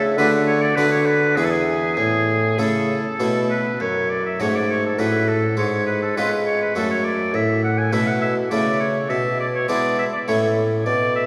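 A flowing, dance-like baroque-style sonata movement with continuo moves at 102 BPM in a straight triple metre, opening in A major before turning to F# minor at 3.8 seconds. A clear oboe carries the melody from 0.2 seconds, with light vibrato and a distant, roomy quality even as it sits up front in the mix. Beneath it, a bassoon anchors the bass line with a warm, present tone and light vibrato of its own. The harpsichord supplies the accompaniment with a plucked, round voice on a single set of strings in the Flemish manner, placed up front alongside the oboe. The whole trio is heard in a church or concert hall with a long, wet reverb of 3.4 seconds, and the passage is cut from a longer piece.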